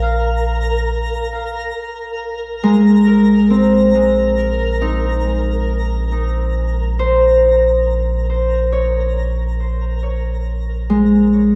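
Reflective and serene, this brief ambient excerpt drifts in a straight, unhurried 4/4. A bright, ringing Celtic harp sits up front, its fingerpicked arpeggios trailing tape echo. Beneath it, a round analog bass holds a deep, sustained tone colored by tube saturation. High above, a twinkling granular texture adds a sparkling octave-up shimmer with a slow attack and its own reverb, set low in the mix. The harmony opens unaccompanied by any chord before settling on a minor ninth at 1.8 seconds, while the bass and texture fade out across the cut, all within a dark, warm production and a wet concert hall ambience.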